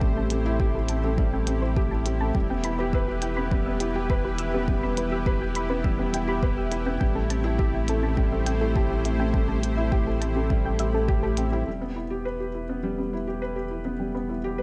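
A melancholic, moving piano and strings electronica piece in A minor at 103 BPM opens with a soft, boxy felt-muted upright piano riff carrying audible action noise and digital delay, over lush, detuned sawtooth pad chords and a dark, round pluck arpeggio in the background, both with chorus and sidechain pumping, along with a deep sine sub bass that also pumps, a layered, tape-warm kick and clicky, low-pass-filtered hi-hats that enter a moment later, with both drums dropping out by 11.5 seconds, all set in light reverb.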